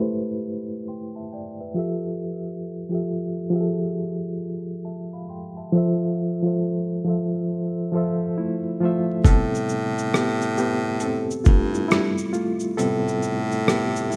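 A rough home-demo mix with vinyl crackle, a low-pass filter and light reverb gives this melancholic, nostalgic lo-fi hip hop fragment a faded, worn character, swung on the sixteenths and cut from a longer piece. A reedy, barky electric piano opens alone, lightly overdriven and pulsing with fast tremolo through its built-in speakers, with a cassette-tape haze, while a filter sweep runs across it until 9.2 seconds. Early on it plays a brief fill as the chords move from Am9 to Fmaj9, and the harmony later settles on Fmaj7. At 9.2 seconds the harmony returns to Am9 as the electric piano takes a solo and a gritty sampler-style drum kit enters up front, with a thumpy kick, hi-hat, rim click and shaker carrying vintage 12-bit grit and overdrive. At the same moment a close-miked baritone saxophone joins in a bass role, clear and subtoned with light vibrato in a jazz style, staying low between G2 and A2 through to the end.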